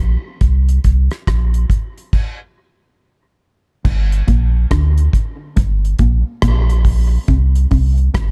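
Hypnotic and meditative, this dub reggae excerpt rides a deep, round sine sub bass and a dry, tight 70s drum kit with dark cymbals, crash, hi-hat, kick and rim click, both up front in a warm mix with little reverb, and after a stop from 2.1 to 3.8 seconds a clean, fingered electric guitar riff with spring reverb enters at 3.8 seconds over the swung groove.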